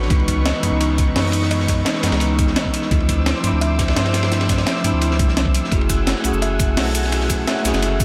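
A straight 4/4 liquid drum and bass groove rolls at 171 BPM, with a thumpy, compressed electronic kick, a gritty sampler-style breakbeat kit of cabasa, hi-hat and high-tuned snare, and a dark, smooth acoustic breakbeat kit whose cymbals, hats and snare are high-pass filtered in a small room. A deep, saturated sub bass anchors the melancholic excerpt, while a bell-like tine electric piano carries clean 12-bit sampler grit and dub echo over a lush, warbling sawtooth unison pad with sidechain pumping. A woody kalimba rings softly in the background with its own dub echo, all moving through C#m9, Dm9 and F#m9 under light reverb.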